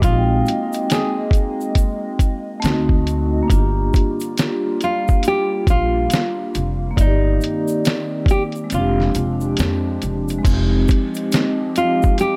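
A fingerpicked nylon-string guitar carries the melody up front, its bright, full-bodied tone marked by audible finger squeak, in this hazy, reflective lo-fi hip hop excerpt at 69 BPM with a swung sixteenth-note feel in F dorian. Beneath it, a vibraphone played with soft mallets adds mellow, ringing accompaniment with a slow motor vibrato and a cassette-tape dullness. A warbling, detuned pad holds sustained chords with a slow attack and long release, its chorus and built-in reverb lending a nostalgic lo-fi shimmer. A woody, thumpy upright bass sits close in the mix and drops out at 10.8 seconds, while a compressed, pitched-down sampler-style drum kit with a muffled kick, medium-tuned snare, hi-hat and crash drives the groove, the kick falling silent from 8.7 to 10.5 seconds. A grainy egg shaker ticks faintly in the background, and the harmony drifts from Bb13sus4 through D7b9 and Gm7 before settling on Fm9, all wrapped in light reverb.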